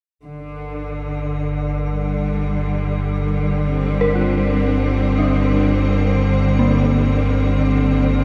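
Drenched in a huge, echoing reverb with a seven-second tail, this short excerpt of dark ambient drone unfolds at 64 BPM in G minor with a dark, unsettling mood. A lush, bowed cello section holds sustained chords up front from 0.2 seconds, joined at 0.6 seconds by a deep, rumbling drone in the low register and an icy, crystalline pad that fades in softly in the background with chorus and its own reverb. At 4.0 seconds an eerie, inharmonic synth bell adds arpeggios coloured by chorus, tremolo and delay.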